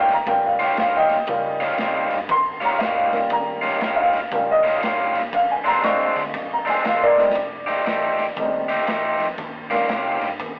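A swung shuffle in 4/4 drives this gritty, swaggering electric blues, cut from a longer piece. The upright piano sits up front with a woody tone, comping through the changes from Eb9 to Bb9 at 5.3 seconds, then F9 and back to Eb9. A crunchy, overdriven electric guitar, bright and picked, shares the foreground with its riff. Beneath them, a vintage fingered electric bass stays dark, round and foam-muted, punchy yet tucked well into the background. The raw garage drum kit, with kick, snare and ride, has a pumping stone-room sound that is saturated and rolled off on top, and it breaks into a fill at 7.1 seconds. The whole recording has the rough feel of a rehearsal room, with a short, wet booth ambience, a warm saturation and a telephone-like sound.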